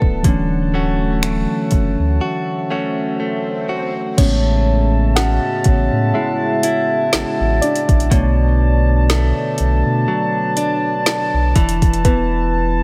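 Tender and smooth, this short cut of contemporary R&B moves at a slow 61 BPM in A major with a light swing, built on an electronic drum kit with a soft kick, woody snare, metallic hats and finger snaps, plus a round, deep sub bass. Muted, felt-like synth keys with chorus carry the accompaniment and take a solo from 4.2 seconds, while a distant, mellow brass ensemble with light vibrato holds sustained chords and a clean, direct-recorded electric guitar picks delayed arpeggios. A break arrives at 2.2 seconds, and a faint electronic swell rises in the background from 3.1 seconds. The dry mix rolls through Dmaj7, Amaj7, Bm7 and E7sus4.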